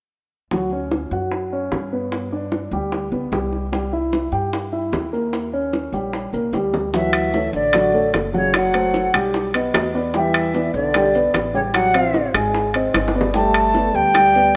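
Afro-Cuban jazz at a lively, sunny 150 BPM in D major, this excerpt opens with a dark, up-front baby grand piano laying down the accompaniment over woody pizzicato upright bass and round, low-tuned bongos, with grainy maracas joining at 3.7 seconds. At 6.9 seconds, after a short drum fill, an airy, distant silver flute takes the melody while a breathy, whispered trombone with vibrato carries a second line, and ringing metal-shelled timbales enter close and dry just after. Moderate plate reverb colours the rough home-demo mix, and rich jazz harmony moves through chords such as Dmaj7, Eb7, F#dim and Baug before settling on Gadd9.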